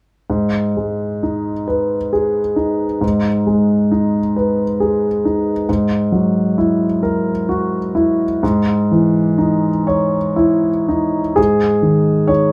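An intimate grand piano, up front with audible action noise and long natural sustain, plays alone from 0.3 s in this reflective, wistful neoclassical minimalist fragment cut from a longer piece, moving rubato in 6/8 at roughly 38-46 BPM in G# minor through G#m, F#7/G# and C#madd9/G# before settling on a bare G#5 at 11.4 s, captured live in a room with moderate studio reverb.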